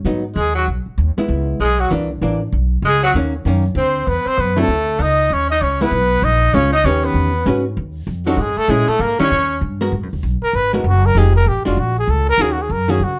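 Jazz in G# minor at a brisk 195 BPM, swung in 4/4, with a moody, late-night feel, taken from a longer piece. A breathy trumpet carries the melody, close-miked and intimate, with a soft attack, light vibrato and scooped notes that give it a whispered quality. Beneath it, a growling tenor saxophone plays a raspy, gritty second line with vibrato and its own scoops, then drops out at 9.6 seconds. A dark, clean, compressed hollow-body electric guitar comps up front, while the pizzicato upright bass sounds woody and thumpy. The harmony moves through rich extended chords such as G#m7, Bmaj9, F7alt and A#mmaj7, with a new section arriving at 9.9 seconds, all set in a light reverb.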